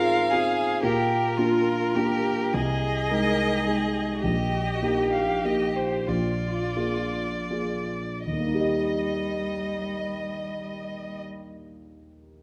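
A lilting 6/8 pulse moves with free, elastic rubato and slows through the opening 8.3 seconds in this lyrical, tender slow movement for piano quartet, cut from a longer piece. A single violin carries the melody with rich, expressive vibrato and portamento, its tone at once distant and present. A second violin traces a focused, smooth-topped line beneath it, while a cello adds its own warm, singing second line with vibrato and portamento. A dark, mellow concert grand anchors the accompaniment up front with deep bass and a vintage character. The strings fall silent at 11.2 seconds, leaving the piano to finish alone at 12.4 seconds, all within a moderate recital-hall reverb and a dark, warm production.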